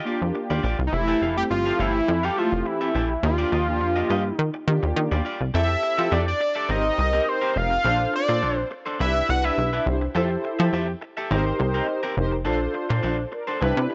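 A straight, danceable funk groove in 4/4 rides on a punchy, plucky analog bass up front, while mellow, dark, round synth brass with chorus and a bright, twangy, slightly broken-up electric guitar riff with lush chorus sit under a fat, detuned analog lead melody with vibrato that plays from 0.9 to 9.9 seconds over major-ninth chords in this feel-good excerpt cut from a longer piece.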